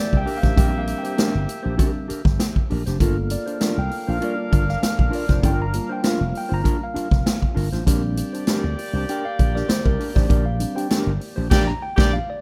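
Funk excerpt at 99 BPM in G dorian, driving and funky, where a mellow, clean tine electric piano takes the solo with stabs over a Gm7 groove that moves to Bb6 at 7.9 seconds. A growly, punchy slap bass through an envelope filter sits below a dark, fingered electric guitar accompaniment, while a swinging big-band drum kit with dark cymbals, a punchy kick and a medium-tuned snare plays up front in a big, natural room. A distant, warm horn section with vibrato carries a second line, and a band accent and silent gap at 11.5 seconds close this rough home demo mix.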